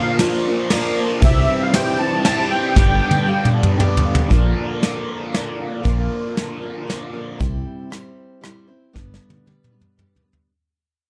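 Dark, lightly reverberant production frames this warm, open-road excerpt of folk rock and heartland rock at 116 BPM in 3/4, where a shimmering, reedy musette accordion melody stops at 3.5 seconds over picked steel-string acoustic guitar, a bright, double-tracked overdriven electric guitar riff with phaser, a clean electric piano with harmonic tremolo in the background that adds a fill before stopping at 4.3 seconds, an up-front brushed drum kit with punchy kick and fills, and a direct fingered electric bass entering at 1.2 seconds, as the chords move through Bb, C and G before a fade-out.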